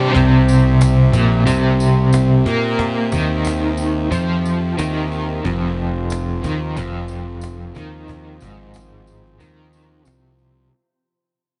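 Psychedelic rock excerpt at 91 BPM in a straight 4/4, kaleidoscopic and hazy, with a crunchy, double-tracked overdriven guitar riff pulsing with tremolo up front beside a fuzzed, picked electric bass, moving from C to F5 at 5.4 seconds. Alongside them a clean tonewheel organ holds sustained chords with audible key click through a stopped rotary speaker, while a snappy cajon with snares and a jingly tambourine sit in the background. The dreamy mix is soaked in lush hall reverb, its top end rolled off above 10.4 kHz, and the whole passage fades out from 0.1 seconds to its close at 10.7 seconds.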